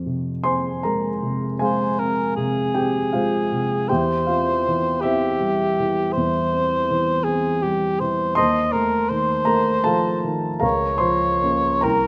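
In a rubato 12/8 at 53 BPM, this solemn, yearning romantic duo in F minor, cut from a longer piece, opens on a dark, vintage baby grand piano accompanying from the start across C2 to C6, before a mellow cor anglais with light vibrato and a soft attack enters at 1.6 seconds to sing the melody between G4 and Eb5, both up front with close, detailed microphones and light reverb as the harmony moves from Fm through C/E and F7/Eb to Bbm/Db.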